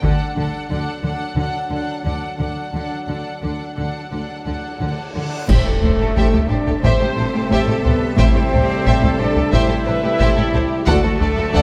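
In a moderate scoring-stage reverb, this epic, dramatic orchestral film-score fragment sets a lush, focused violin melody over a background violin second line, smooth viola accompaniment, warm French horn chords, a dark, woody cello bass and a bowed double bass section, with hard-stick taiko hits that open the passage, bright cymbal swells, clash cymbals and concert bass drum entering at 2.7 seconds, and a huge reverse cymbal at 5.1 seconds leading into an impact and band accent at 5.5 seconds, where the taiko return alongside an airy concert flute, very quiet mellow trombones and an expressive, close string section holding sustained chords.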